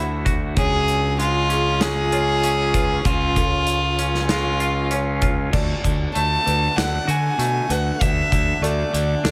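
Lightly reverberant with a small-room ambience, this euphoric, soaring post-rock excerpt at 97 BPM sets an up-front, rich violin melody with soft-attack sul tasto bowing and digital delay over fuzzy, overdriven fingered electric bass, a twangy, scooped electric guitar picking tremolo-laced, delayed arpeggios, felt-muted upright piano arpeggios sitting mellow and boxy in the background, a very quiet glassy FM pad warbling with ensemble chorus, and a big acoustic rock kit with a punchy kick that enters at 0.3 s, with the harmony moving from Dadd9 to C# before settling on D at 5.5 s.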